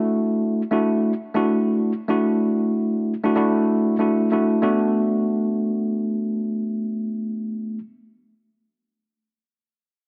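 A mellow, slightly out-of-tune tine electric piano sits up front in this gritty, moody hip hop excerpt at 95 BPM in B minor, its worn, clean tone filtered at both ends and touched with light reverb as it swings over a Dadd9 chord before moving to Bm7 at 4.6 seconds, all within a dense, heavily limited modern master.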